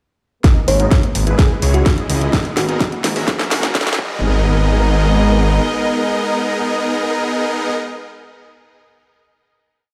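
Heard through a big sound system in a bare stone room with light reverb, this brief, euphoric festival progressive house piece in G# minor at 127 BPM opens with a build-up. A punchy four-on-the-floor kick, programmed hi-hats and a cracking snare drive a drum fill, while huge, airy supersaw dotted-rhythm chords and a dark, bowed string pad pump against the kick as filter sweeps run through them over G#madd9, C#m and F#add9. A thick, menacing detuned saw bass plays off-beat, a sparkling bell-like FM electric piano adds a melody in the background, and a very quiet riser leads into the final hit at 4.2 seconds, where the strings and supersaws ring on until 7.7 seconds.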